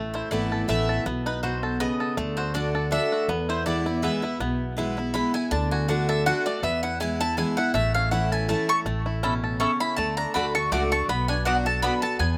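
Virtuosic and driving, this bluegrass excerpt moves at a brisk 162 BPM in 3/4 with a swung eighth-note feel in A major. A round, double-strung mandolin carries the lead as a solo across the whole passage, sitting up front while a twangy, fingerpicked banjo melody adds a percussive edge. A full-bodied dreadnought guitar, picked with audible finger squeak, supplies bright accompaniment, while a thumpy, woody upright bass anchors the low end. From 9.2 seconds a second mandolin adds short stabs. The mandolins, banjo and guitar carry a slapback echo, and the dry outdoor recording leaves the instruments close and immediate as the harmony moves from Asus2 through B, D and E before closing on Bm.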